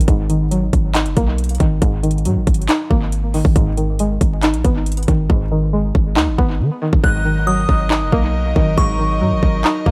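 Melancholic and dark, this half-time trap cut from a longer hip hop piece moves at 138 BPM in 4/4, shifting between D#m and G#m. A twangy, nasal resonator pluck with a string-like sawtooth edge carries the accompaniment up front, washed in chorus and dub echo under a low-pass filter that sweeps through its part until 7.0 seconds. Beneath it, a deep, boomy 808-style bass with a sine core and fast, decaying notes sits prominently alongside an electronic trap kit of hard-clipped kick, handclaps and metallic hi-hats, with the hats muted from 5.3 seconds onward. At 7.0 seconds a tinkling FM tine bell enters high above as a second line, its full-bodied chime trailing chorus and dub echo, while a rich chamber string section adds sustained, bowed ensemble chords with light vibrato, an earthy tone and a smooth top. The mix is dry in room sound yet heavy with echo, and vinyl crackle lends the whole track a worn surface.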